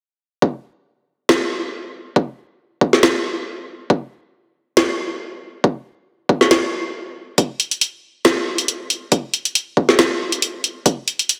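A half-time groove at 138 BPM in 4/4, with a light 54% swing on the sixteenths, drives this heavy, meditative deep dubstep fragment. A punchy, layered electronic kick drum, high-pass filtered and placed up front, enters at 0.4 seconds, and a deep house drum kit of woody snare and dark hi-hats joins at 1.3 seconds. Both parts sound re-recorded in a small room, and the whole is bathed in a wet echo-chamber reverb and squeezed into a heavily compressed, radio-like sound.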